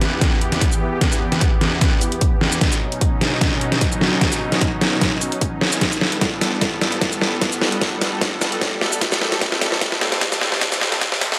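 An up-front dubstep drum kit drives this aggressive, chaotic clip of heavy wobble dubstep, its hi-hat, shaker and deep snare sounding layered and produced, as if re-recorded in a large room. The track runs at 150 BPM in 4/4 with a half-time feel and a 54% swing on the 16ths. A punchy, layered electronic kick enters at 0.2 seconds and shares that same large-room character. Beneath them, a lush, airy supersaw pad holds sustained chords from E2 up to A4. Its detuned sawtooth unison, noise layer and slow attack give it a bright glow, and sidechain pumping makes it breathe. Across the whole excerpt, a build-up, a drum fill and a filter sweep unfold together over a progression of Em, Badd9, Gadd9 and Am7, set in light reverb and digital ambience with a high-pass filter, before the passage cuts off as part of a longer piece.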